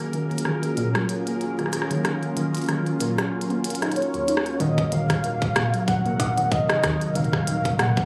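IDM excerpt with a cerebral, melancholic mood, opening on a swirling phased analog pad, a bubbling stepped-filter texture in the background, a warbly, dusty lo-fi pluck playing arpeggios under a filter sweep, and an up-front glitchy drum kit of clicky hi-hats and rim clicks. A velvety synth lead with vibrato carries the melody from 4.0 seconds, and a rubbery, hollow square bass and a tight, tape-tinged electronic kick join soon after as the chords shift from Gbmaj9 to Ebm69. The mix sits in a roomy plate and club reverb with a compressed, phone-captured character.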